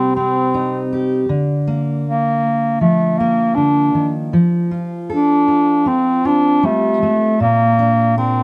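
A clear, soft-attacked bass clarinet carries a reflective, wistful melody in a vintage classical style from the very start, its tone lifted by plate reverb and sitting up front beside a full-bodied, fingerpicked jumbo steel-string acoustic guitar. This acoustic folk duo moves in a straight 4/4 through a short passage built on Cm, Bb/D, F and Bb, with both parts playing together throughout the 8.4 seconds. A moderate small-room ambience and dark, warm production shape the fragment, which is cut from a longer piece.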